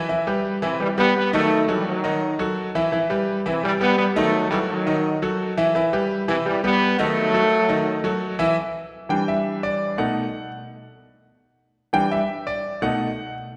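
A tight trombone section carries the melody up front in this passionate, driving Latin piece, its light vibrato and smooth top giving the line a polished pop sheen from 0.6 to 8.2 seconds. Beneath it, a concert grand piano plays accompaniment in E minor at 170 BPM in a straight 4/4, with harmony swinging between Em and D#dim. At 8.6 seconds the piano takes over alone, its brilliant, slightly worn tone, deep bass and audible action noise lending an intimate, present feel as the chords shift to Em7 and B7. A lush reverb from a church or concert hall surrounds the music with a long, resonant tail. The recording is cut from a longer piece.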